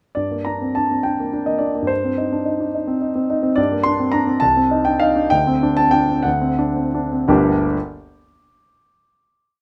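Polished and up front in a light reverb, a concert grand piano with deep bass and short sustain carries this brief, bittersweet and passionate romantic character piece in a rubato 6/8, its single-line melody riding rippling figuration that slows from 2.7 seconds and settles onto a final chord at 7.3 seconds.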